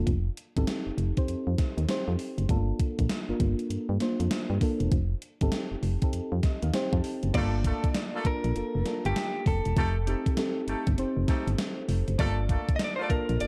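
Bouncy and punchy, this new jack swing excerpt in G minor rides a swung 99 BPM groove of a thumpy, overdriven, gated 80s drum machine with a gated-reverb snare and a round, up-front FM bass under a mellow FM electric piano with chorus and phaser, which plays a fill from 6.1 seconds before a clean, direct-recorded electric guitar melody with spring reverb and delay enters at 7.3 seconds alongside loose, octave-doubled horn stabs with light vibrato, all over alternating F9 and Gm9 chords in a dark, dry mix.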